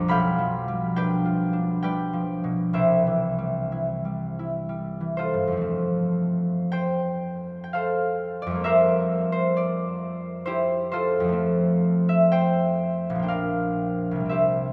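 A ringing, fingerpicked concert harp plays alone through this serene, dreamy classical excerpt in a rubato triple metre, spanning Bb1 to D6 and sitting up front within a long, wet cathedral reverb that places the listener further back in the room, with a new section unfolding from 5.7 seconds.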